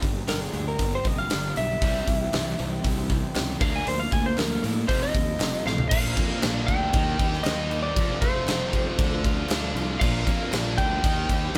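Driving and swaggering, this classic rock passage in F major runs at 117 BPM in a straight 4/4, tuned slightly flat to A4 = 436 Hz and captured as a band playing live in one room with light reverb. Up front, a huge arena drum kit with a pumping hall sound, bright cymbals and a punchy kick anchors a round, fuzzy fingered bass and a tight distorted guitar riff in the background, joined by a very quiet overdriven electric guitar riff. Beneath them sit a shimmering fingerpicked twelve-string acoustic, a swirling, phased vintage string machine and faint hollow group handclaps, while a dark, slightly broken-up, compressed lead guitar solos through the first 5.9 seconds before a drum fill at 5.7 seconds carries the band into a new passage.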